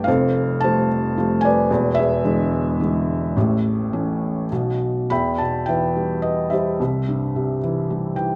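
A close, intimate sound: a felt-muted upright piano sits up front in a moderate recital hall reverb, its tone soft and mellow, with the action noise of the instrument clearly audible. This brief passage, cut from a longer piece of lyrical classical solo piano, moves in a sunny, hopeful 3/4 with a free rubato feel between 99 and 115 BPM, ranging from deep bass notes up into the upper register. The harmony drifts through Fadd9, E7 and A before a pause, then settles into E harmonic minor at 5.1 s, where a new section turns from Em to C.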